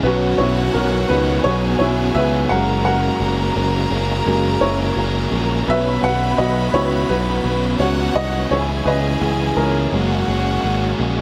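A clear, woody upright piano takes the solo throughout this anthemic piano-driven pop excerpt at 85 BPM, over a picked electric bass, a dark overdriven guitar riff, a biting studio violin section on a second line, and a reedy tonewheel organ holding sustained chords in the background with chorus vibrato and fast rotary speaker, the whole set in a light small-room ambience as the chords move from Bsus2 through F#add9 and C#m.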